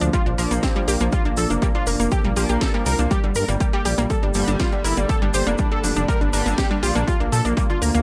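A steady, straight pulse drives this dramatic, hypnotic melodic techno excerpt, with an overdriven, heavy electronic kick sitting up front from 0.1 to 7.7 seconds alongside a layered drum kit of cracking snare and smooth hats, plus a grainy egg shaker tucked in the background. Underneath, a deep, rumbling detuned saw bass holds the low end with a dark, beating tone, breathing with sidechain pumping. A thick, bold unison lead carries the melody with vibrato and tape echo, while a round analog pluck spins arpeggios through chorus and echo. Behind them, a moody analog pad sustains chords with a slow attack and lush chorus, and an edgy sync-sweep polysynth adds nasal, evolving stabs from 0.4 seconds. The harmony moves from Bb to Gmadd9 and back, and the whole recording has a dry, gritty hardware character with little reverb.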